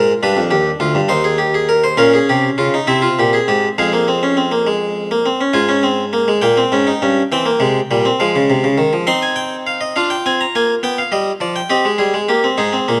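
A solo harpsichord, round and plucked with a single set of strings in the French style, sits up front in this solemn, serious baroque-style four-part fugue in F minor, cut from a longer piece. It moves at 68 beats per minute in a straight 6/8, spanning D2 to C6 and closing on a C minor chord around 11.7 seconds. Close, detailed microphones capture the instrument with light reverb over its 13 seconds.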